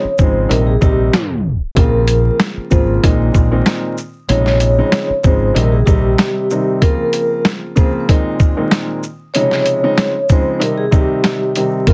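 Gritty, pitched-down sampler drums with a thumpy kick and medium-tuned snare anchor this reflective yet tough boom-bap excerpt alongside a round, dark fingered electric bass that drops out at 6.1 seconds and returns at 11.9, a mellow, boxy baby grand piano with cassette-tape coloring, a ringing vibraphone melody played with soft mallets and fast motor vibrato, and a dry finger snap in the background, while the mix carries a heavily compressed radio sound, vinyl crackle and a tape stop at 1.1 seconds.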